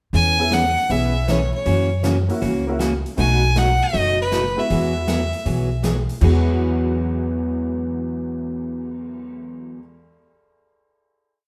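Western swing country in E major at 158 BPM with a playful swing, where a clear, biting fiddle states a motif-based melody up front until 5.8 s over bright, picked four-to-the-bar acoustic guitar, woody two-beat upright bass, a jangly, detuned honky-tonk piano comping in close voicings, and a polished big-band kit keeping time on the hi-hat with a backbeat, the whole band playing live in a stone room before settling on a final Eadd9 chord from 6.2 s.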